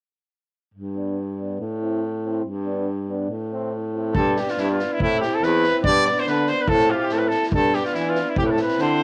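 A mellow, vintage-toned baritone saxophone opens this festive, wild Balkan brass band excerpt at 0.7 seconds, carrying the bass line up front with a light vibrato in a swung 2/4 at 142 BPM in G mixolydian. At 1.0 seconds a soft-attacked euphonium and a trombone with light vibrato join as accompaniment, both clear, distant and roomy, the trombone sitting further in the background, while the harmony rocks between G and Am. Around 4.1 seconds a street-band drum kit enters with a boomy kick and a medium-tuned snare, its acoustic small-room sound rolled off at the top. A bright trumpet takes the melody at 4.2 seconds, standing up front in a classical style above the band. The euphonium, trombone, trumpet and drums carry a cassette tape coloring, and the whole home recording sits in light reverb and studio ambience, cut from a longer piece.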